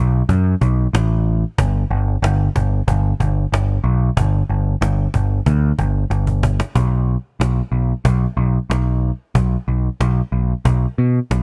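A growling picked electric bass, bright and overdriven, drives this aggressive, heavy metal fragment from the first moment, sitting up front in a rough home demo mix with a small room ambience. A woody cajon with faint snares joins at 0.3 s, played with hard hands and heard close and dry. A drum fill at 6.1 s leads into a new section at 6.8 s, where the bass and cajon carry on to the cut.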